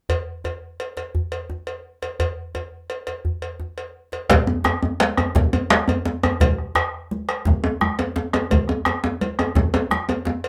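A deep, hard-handed djembe sits up front beside a round bombo and ringing congas, all three arriving at 4.3 s over the metallic cowbell and softly played, close djembe that open this earthy, powerful West African drum ensemble excerpt in a straight 12/8, heard in a small, reverberant room.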